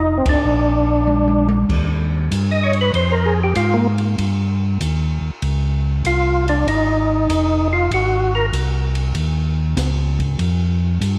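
A tight band accent opens this swinging, bluesy soul jazz organ trio excerpt, as two tonewheel organs sound together from the start at a relaxed 97 BPM in a loping 4/4 swing. The lead organ carries the melody with a full, lightly overdriven tone, its third harmonic percussion adding a crisp click, shaped by chorus vibrato with the rotary speaker stopped. Beneath it, a second organ holds the bass line with a mellow, round, clean sound, coloured by chorus vibrato and a slow rotary speaker, and both organs sit up front. A dark, smooth acoustic jazz kit with dark cymbals, a high-tuned snare and a punchy kick plays a short fill at 1.1 seconds before the organ solo begins at 1.7 seconds over rich chords such as Eb13 and Ab6. The melody organ drops out at 8.5 seconds, leaving the bass organ and drums in a moderate echo chamber reverb.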